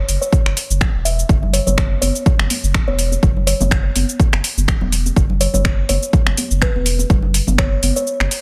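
Driving and spiritual, this short afro house cut rides a swung groove in four. A woody, hollow-bodied kalimba carries the melody in soft, dark plucks trailed by delay. Beneath it, a round, sine-like sub bass sits deep and sustained, pumping against the sidechain. From 0.3 s a punchy, layered electronic kick sits up front with a roomy, tape-touched weight. An afro-pop drum kit adds finger snaps, metallic hi-hats and shaker, its snare gently clipped. Bright, saturated congas join at 1.4 s, all within a dense, heavily limited master over a single Esus2 chord.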